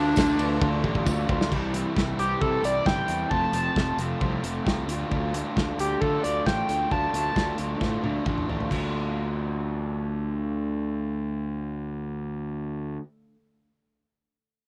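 Bittersweet and cool, this 134 BPM indie rock excerpt in D minor sets a screaming, wave-folded synth lead with vibrato and tape echo up front, carrying the melody until 7.6 seconds over two crunchy, bright overdriven guitar riffs in the background and a growly fuzz bass. A loose acoustic drum kit with dark cymbals and a punchy kick plays up front until 8.8 seconds, with fills marking the section changes, while a bell-like electric piano and a jingly tambourine add brief touches near the start. The chords move from Dm to C and F and back to Dm in a small room.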